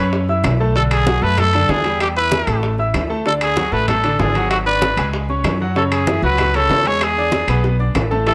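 A straight 4/4 salsa groove at 192 BPM runs through this joyful, sunny fragment of a longer piece, with pizzicato upright bass thumping up front on dark gut strings while background congas, tight high-tuned bongos, woody claves and distant ringing metal-shell timbales fill out the percussion. A raspy, growling trumpet carries the melody as an up-front solo with light vibrato, and a brilliant grand piano, intimate with audible action noise, comps through a progression moving from Bm7 and Em through G#m7b5 and F#m7 to E7. Light reverb lends some space, and a drum fill at 7.6 seconds closes the passage.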